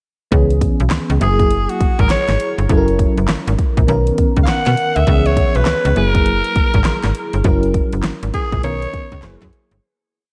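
A raspy, gritty alto saxophone enters at 1.2 s with scooped, vibrato-laden call phrases trailed by analog delay, riding a bouncy, confident new jack swing R&B groove of hard-swung drum-machine beats (a punchy kick, a fat snare layered with handclaps, and bright hi-hats), a snappy, metallic slap-like FM bass line full of muted ghost notes and chromatic approach notes, and a warbling FM electric piano that holds mellow chords with grace notes through tremolo and phaser, all in a dreamy mix soaked in plate reverb that fades out from 7.4 to 9.8 s.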